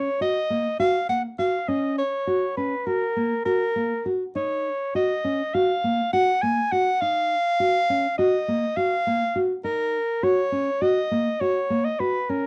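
Set in an uneven 9/8 metre at 204 BPM counted in eighths, this piece of contemporary chamber music moves with a straight, restless pulse. A breathy soprano saxophone carries the solo melody from the start to 12.5 seconds, its subtone, soft attack and whispered, intimate jazz phrasing sitting up front. Beneath it, a thumb-plucked classical nylon-string guitar plays arpeggios across the same span, its acoustic tone warm and also close to the listener. The harmony rests on F# before moving to D#madd9 at 4.4 seconds, lending the music a shimmering, unsettled colour. Light reverb and a dark production frame the duo, tuned to A4 = 439 Hz in this excerpt cut from a longer work.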